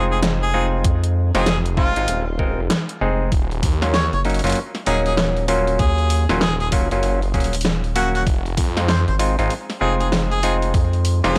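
A dry, rough hardware sound with cassette-tape character frames this short cut from a swaggering, funky glitch hop groove at 97 BPM, swung on the sixteenths and moving from Fm7 to Ebm9 and back. A clear harmonica with light vibrato and scooped notes carries a jazzy melody through analog delay, above mellow, stringy clav stabs that add 12-bit sampler grit and sidechain pumping. Up front sit a rubbery, hollow square bass and a swirling, thick, phased detuned saw bass, the saw entering at 1.3 seconds, while an overdriven dubstep kit with a huge snare and bright hats arrives at 0.2 seconds and a knocking electronic kick follows at 0.8 seconds, both with a small-room character.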